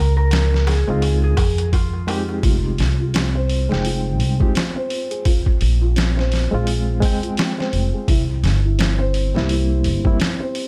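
A swung sixteenth-note feel in 4/4 drives this smoky, cinematic trip hop excerpt, carried by a gritty, pitched-down sampler-style drum kit whose thumpy kick, medium-tuned snare and hi-hat sit up front. Beneath it, a woody pizzicato upright bass anchors the low end, while a compressed darbuka with a clay shell and soft hands murmurs in the background during the opening. An electric slide guitar, slightly broken-up and touched with tape echo, carries the melody before stopping at 2.4 s. From 0.9 s, a reedy, barky electric piano with overdrive, fast tremolo and tape echo supplies accompaniment, passing through a filter sweep early on. At 2.4 s, a felt-muted upright piano enters with dark, boxy arpeggios and audible action noise, and the studio reverb lends the piece a sense of space.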